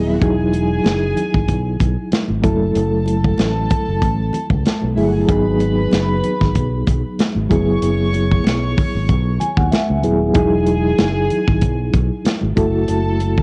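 Lightly swung sixteenths in 4/4 drive this cinematic, smooth slice of lush 1970s-style soul, with a growly, bright fingered electric bass up front and an acoustic drum kit entering at 0.2 s with a punchy kick, medium-tuned snare, hi-hat and a rolled-off top, joined at 0.5 s by very quiet, ringing, high-tuned congas. A clean, reedy electric piano with fast tremolo through its built-in speakers carries the accompaniment over Emaj9, F#m7, G#m7 and F#9sus4 chords, adding a fill at 9.1 s. A distant bowed string section with a gut-string, period-style tone holds a second line behind it, and the whole excerpt has the light reverb and small-room ambience of a home cassette recording.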